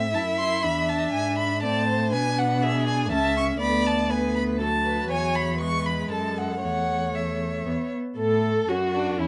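A bowed violin carries the melody, its soft attack, vibrato and portamento lending the line an expressive, singing quality above a second violin, a viola in the accompaniment and a cello holding the bass up front. This quick, graceful and cheerful classical-period movement for string quartet sits in A major at 120 BPM in 3/4, cut from a longer piece, with the melody entering at 0.1 seconds and a new section beginning at 8.2 seconds. Light reverb surrounds the four warm, single-player strings.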